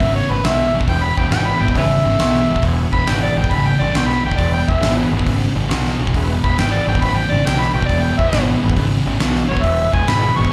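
Blues rock and southern rock with a raunchy, swaggering swing, this live club cut features a gritty, amplified harmonica solo with tongue slaps and vibrato, up front and treated with slapback echo, while a double-tracked fuzz guitar riff, a growling overdriven bass, a thick tonewheel organ sitting in the background with key click and chorus vibrato, and a huge arena drum kit with a fat snare and punchy kick all play throughout, heard through the venue's PA with club reverb.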